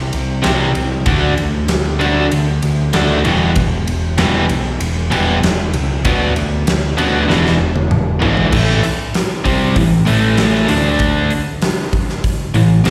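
Heard through a venue's PA with recital-hall reverb and a touch of small-room ambience, this brooding, driving classic rock passage in E minor at 97 BPM sets a round, growling overdriven bass and a big drum kit with a punchy kick, fat snare and bright cymbals up front, under two picked guitar riffs, one warm and overdriven, the other tight, distorted and edged with slapback echo, while a drum fill from 7.3 to 8.5 seconds carries the chords from E7 into a closing stretch on Am and D5.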